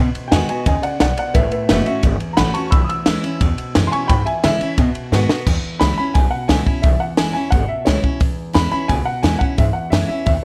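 A dark, slightly detuned upright piano with slapback echo carries the melody and solos through the first 5.5 seconds of this upbeat, rollicking rockabilly excerpt in E major at 175 BPM, backed by thumpy gut-string upright bass, a bright dreadnought acoustic guitar, and a dry, up-front cocktail drum kit with a high-tuned snare whose fill at 5.1 seconds leads into the second section, all with little reverb.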